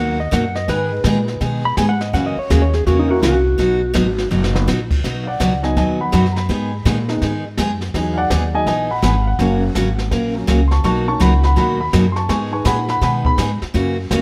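A playful, down-home western swing piece in B major at 165 BPM opens with a dark, compressed lap steel taking a short slide solo over bright, full-bodied picked acoustic guitar, thumpy gut-string upright bass and an intimate, slightly detuned upright piano; a smooth brushed drum kit joins at 0.3 s, and the piano, its action noise audible, takes over the solo at 5.0 s, all under light reverb.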